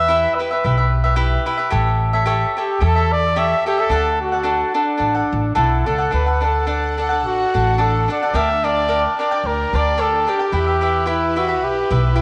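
Romantic and festive, this mariachi-flavored Mexican folk piece moves at 110 BPM in 4/4 with a gentle swing on the eighth notes, set in D major and cut from a longer performance. A warm trumpet carries the melody from the start, played solo in a classical style with light vibrato and a soft attack, close-miked and up front. Beside it, a crisp, picked acoustic cavaquinho supplies the accompaniment, while a woody pizzicato upright bass with steel strings anchors the low end, both also up front. At 6.1 seconds a rich, focused violin section enters in the background with bowed, sustained chords full of vibrato, broadening the sound for the second half. The harmony moves through Em, A7 and D before a darker turn to Gm/D and a return to Em, and a wet echo-chamber reverb with a 2.1-second tail gives the whole a spacious glow.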